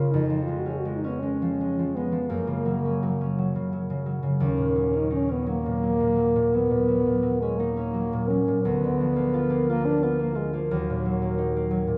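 Lyrical and warm, this short passage from a longer romantic classical piece pairs French horn and concert harp in a gently flowing 12/8 with a relaxed, rubato feel. The mellow horn carries the melody throughout its 12 seconds, its smooth top giving the solo line a rounded, singing quality in a classical style. Beneath it the harp supplies fingerpicked accompaniment, its acoustic tone ringing and glowing as it ranges down into the low register. Both instruments sit up front, yet the recital hall's reverberation is generous, with a decay of 1.4 s, and the listener seems placed further back in the room. The harmony drifts through rich, shifting chords, giving the moment a softly yearning color.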